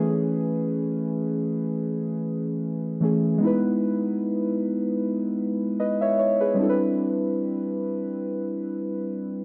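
Muted, felt-like synth keys open this brief, dreamy R&B passage, playing alone and placed up front for its full 9.4 seconds. Their soft, intimate tone blends triangle and sawtooth character with a noise layer, and each note has a fast attack before it decays. Chorus and light reverb give the keys a smooth, hazy glow within a dark production. The harmony drifts from Amaj7 to Emaj7 at 3.4 seconds and settles on Cmaj9 at 6.6 seconds, spanning E3 to E5. Cut from a longer piece, the fragment feels unhurried and floating, like a late-night interlude.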